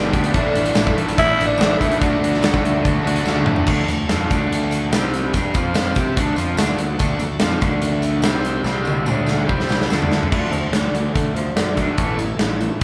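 A straight 4/4 classic rock groove at 144 BPM in D major drives this confident, sunny excerpt, where a big, up-front rock kit with a tight kick and a rolled-off top anchors fuzz-drenched fingered bass, three overdriven riffing electric guitars (one biting, one lo-fi and raw, one a very quiet double-tracked stack that plays only until 3.7 seconds), a faint picked steel-string acoustic with finger squeak, a very quiet shouting tonewheel organ on a slow rotary speaker, and a jingly tambourine from 0.7 to 10.2 seconds, while a raspy, growling tenor saxophone states the melody early and returns for a solo at 10.3 seconds, with drum fills and a wet studio reverb giving the feel of a band playing live in one room.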